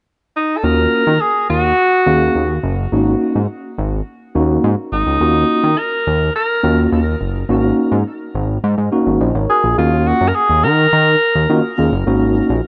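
Early-eighties boogie funk in a straight 4/4 groove, this danceable, funky snippet is cut from a longer piece and carries the character of a rough home demo, with light reverb, a small room ambience and a dulled top end. A breathy alto saxophone takes the jazz-style solo melody from 0.4 seconds, up front and clear, with subtone colour, scooped notes and a vintage tape echo trailing its lines. Beneath it, a fat analog bass arrives at 0.6 seconds, thick, nasal and saturated, blending detuned sawtooth and square-wave tones with a fast-attack filter pluck and sustained notes that sit prominently in the mix. A mellow tine electric piano supplies clean accompaniment through its built-in speakers. The harmony alternates between Ebm9 and Ab7sus4 throughout, with a brief new section beginning at 9.8 seconds as the saxophone drops out shortly before the end.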